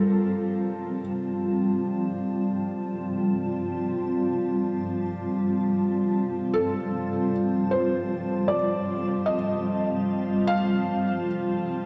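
In free time, this serene, luminous ambient excerpt rests on a cloudy, blurred, dark granular pad holding sustained chords up front throughout, while a reedy, breathing pedal harmonium drone fades in beneath it and a soft, muted felt-muted upright piano, with audible action noise and shimmer reverb, sounds a brief melody at 0.0 seconds before returning from 6.5 to 11.2 seconds, all set in a lush hall reverb.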